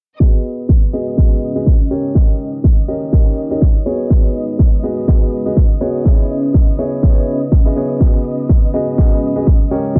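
This piano house excerpt is anchored by a punchy, up-front electronic kick drum, tape-warm and layered, driving a 123 BPM groove in 4/4 with a light 16th-note swing and a bittersweet, soulful mood in G# minor. A clear, smooth grand piano with short sustain plays the main riff through the whole clip, its vintage tone shaped by sidechain pumping, a low-pass filter sweep and digital delay. Behind it, a lush symphonic violin section holds sustained chords with expressive vibrato and a soft attack, sitting in the background with a touch of 12-bit sampler grit, pumping and its own filter sweep. From 1.0 seconds a deep, dark ambient pad joins, a warbling, detuned sawtooth-and-sine texture with a sub octave, chorus and built-in reverb, breathing with the same sidechain pulse. A very quiet electronic hi-hat ticks beneath it all, while the chords move from G#m7 through D#7 and C#m7 before returning to G#m7 at 8.0 seconds, in a dry, filtered mix.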